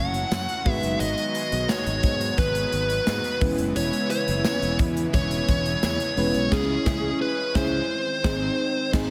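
A dark, compressed fuzz lead guitar carries the melody up front over a dreamy FM electric piano with chorus, tremolo and slapback echo, a warbling brassy analog pad, a growly fretless bass in lush chorus, a very quiet double-tracked overdriven guitar, punchy studio drums with tambourine and a grainy tube shaker that drops out at 6.5 seconds, all in a nostalgic, dramatic 1980s-style pop groove at 87 BPM that moves from F#m7 through E6 to a band accent on C#m and G# in a big arena reverb.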